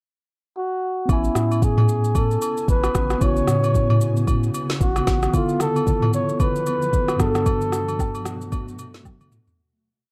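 The bucket-muted trumpet leads from 0.6 seconds, dark and breathy, sitting up front with scooped notes and a digital delay as it spins a jazz-style melody out of short call phrases. This is a soulful amapiano piece in swung 4/4, and at 1.1 seconds the groove arrives: a smooth R&B drum kit with a soft kick, woody snare, steady shaker and syncopated rim clicks, joined by close, dry agogo bells and woodblock tapping out a timeline. A mellow tine electric piano holds rootless chords dressed with grace notes, while a round analog bass plays a deep, dotted figure until 5.3 seconds. From 2.5 seconds a cloudy, evolving granular pad drifts in the background, soaked in its own reverb and gently pumping. The harmony moves from Amaj9 to Dm6 and then Gmaj9, and the whole short piece has a dark, warm production, fading out from 7.5 seconds as a drum fill closes it.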